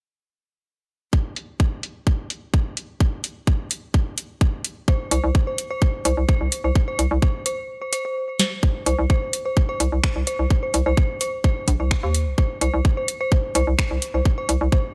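A digital ambience surrounds this sparse, cool minimal techno excerpt, a straight 4/4 groove in C minor at 128 BPM. A layered, tight electronic kick drum, re-recorded in a large room, opens at 1.1 seconds up front, joined by a booming analog drum machine whose crisp snare and metallic hi-hats sit under low-pass filtering alongside finger snaps. From 4.9 seconds, an eerie, detuned synth bell plays a riff around C5, its inharmonic FM tone decaying into a long, mellow release coloured by chorus, phaser, digital delay and sidechain pumping. At 5.1 seconds a hollow, bouncy FM bass with a punchy, fast attack enters, moving between Bb1 and Eb2 and pumping through sidechain compression. A brief break at 7.7 seconds and a drum fill lead into the second half, where the harmony settles on C5 while the same parts continue to the cut.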